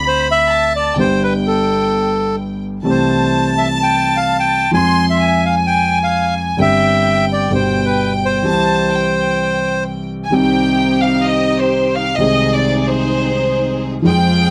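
This tango moves at 129 BPM in 4/4 with a rubato feel, nostalgic and playful in mood, opening in C major before turning to C minor at 10.3 s. A reedy, bright bandoneon carries the melody up front until 9.8 s. A chamber violin section adds a second line with light vibrato and a biting, earthy edge. A concert grand piano accompanies throughout, intimate and deep in the bass, its vintage tone carrying audible action noise. At the turn to minor the violin section takes a solo, and a lush symphonic string section enters with intense bowed stabs. The recording is close and detailed with light reverb, and the harmony passes from Dm7 and G through Fm and Gsus4 before settling on Cm and Ab/C.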